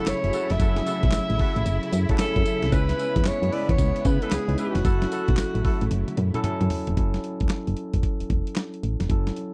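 New jack swing R&B with a bouncy, slick mood, this brief excerpt moves at 113 BPM in F# minor with a swung sixteenth-note feel, cycling through F#m7 and C#m7 chords. A dusty soul sampler-style drum kit sits up front with a gritty, compressed sound, a thumpy kick and a medium-tuned snare, joined by handclaps, hi-hat, tambourine and toms. A punchy, round FM bass shares the foreground, its dark digital tone fast in attack and decaying. Above them, a distant, roomy alto saxophone carries the melody with light vibrato until 6.4 seconds, while a worn, slightly out-of-tune electric piano comps throughout, a lush bowed string section holds sustained chords and a mellow, tight horn section adds vintage jazz-style stabs. A drum fill from 5.9 seconds leads into a new section at 7.0 seconds, where the strings stop and the bass, drums and electric piano carry on in a dry, close 1970s-style studio sound.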